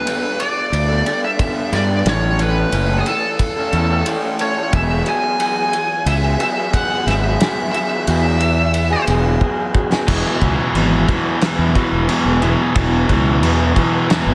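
A half-time feel carries the opening of this restless, cathartic quiet-loud alternative rock excerpt. A loose, acoustic indie drum kit with dark cymbals and a pumping small-room sound plays under a lo-fi guitar through a small old amp picking arpeggios with spring reverb and analog delay, while a round, fuzzy fingered bass sits up front and a bright, high-gain lead guitar sings a distorted melody until 9.0 seconds. A drum fill at 9.4 seconds opens the heavier second section at 10.1 seconds, where a compressed overdriven guitar and a thick fuzz guitar further back play a low riff over an Esus2 chord, all inside a big arena sound with lush concert-hall reverb.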